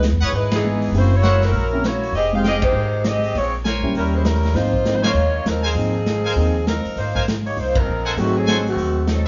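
A swinging 4/4 groove drives this energetic, joyful big band swing excerpt, with a muffled vintage drum kit on hi-hat, ride, snare and punchy kick under a woody, thumpy pizzicato upright bass placed up front. A clear, smooth-topped saxophone section with light vibrato carries the melody, while a brilliant trumpet section adds soft-attacked stabs from 0.2 s and a dark, mellow grand piano comps from 0.6 s through lush chords like Dbm9, Gb7#11 and Ab69. Punctuated by repeated full-band accents, the group sounds as if playing live together in one room with moderate reverb and a rolled-off, vintage top end.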